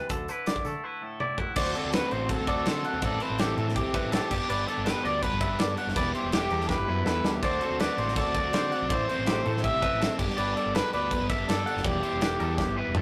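At 163 BPM in a straight 4/4, this math rock and midwest emo excerpt moves with an intricate, playful energy. A bright, scooped, twangy electric guitar picks clean arpeggios from the first moment, joined by a fingered, twangy guitar playing compressed accompaniment that stops at 3.0 seconds. A growling fingered bass with overdrive plays alongside a punchy, airy studio kit with a medium-tuned snare that sits up front, with drum fills at 1.2, 6.7 and 12.6 seconds. At 1.6 seconds a smooth trumpet takes the melody with vibrato in a pop style, while a double-tracked overdriven electric guitar drives a riff beneath it. The harmony moves from Dadd9 to a repeating cycle of D7, Am7, Gmaj7 and Em7, and the whole take carries the rough, tube-saturated character of a rehearsal room with moderate reverb.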